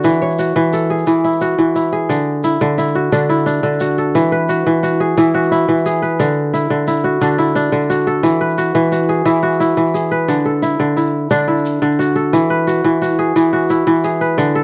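Flowing and hypnotic, this excerpt of West African traditional string music moves at 117 BPM in a straight 12/8, with an up-front kora spinning fingerpicked arpeggios between D3 and C#5 over a steady alternation of E and D chords. The kora rings out crisp and close, while a grainy, bright tube shaker sits much lower in the mix with a touch of live room around it. The sound is a dry, intimate 1970s-style studio recording, with a brief opening section giving way to the main section at 2.1 seconds.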